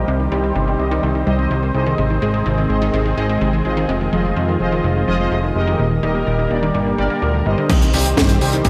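A fat, detuned sawtooth bass sits up front in this bittersweet, melodramatic Italo disco excerpt, holding down the low end at 126 BPM in straight 4/4 and C minor. Above it, nasal, brassy analog synth brass fires off chorused stabs with delay and vibrato, while a lush, airy unison pad sustains slow-attack chords through chorus and phaser. From 0.1 seconds a punchy, detuned unison pluck runs arpeggios with short decay and its own delay. The harmony moves through Cm, Ab, Fm7, Eb and Gm before returning to Cm at 7.7 seconds, where the drums arrive: a tape-warm electronic kick re-recorded in a small room, together with a tight, dry funk kit with a high-tuned snare, hi-hat, toms and crash, filtered and treated with gated reverb. A long plate reverb and bright 1980s-style digital production give the fragment its grand, shimmering sheen.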